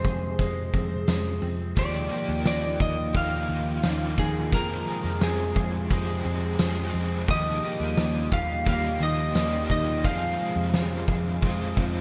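Dream pop at 87 BPM in F minor, melancholic and hazy, drifting between Fm and Ebadd9 in this short cut from a longer piece. A slightly broken-up, compressed slide guitar carries the melody through digital delay, over a warbling, lo-fi pad, a mellow clean guitar playing arpeggios through analog chorus and delay, and a round, foam-muted picked bass. An oversized low-tuned drum kit with a fat snare, punchy kick, hi-hat and tambourine sits up front, treated with gated reverb, and an overdriven garage guitar with tremolo joins at 1.8 seconds, all within lush hall reverb and bright 1980s-style digital production.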